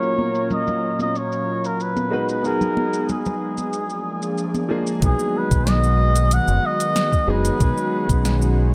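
A cup-muted trumpet with delay sings a veiled, jazzy melody over open-sounding baby grand piano, a breathy chorused pad and an overdriven, filtered deep house kit of hi-hat, shaker and punchy snare as a filter sweep runs through the first 5.0 seconds of this smooth, wistful sunset chillout at 93 BPM, with bright, dry congas adding hard-handed percussion until a round, dark dub bass and a soft, tape-tinged electronic kick arrive at 5.0 seconds beneath a light digital reverb.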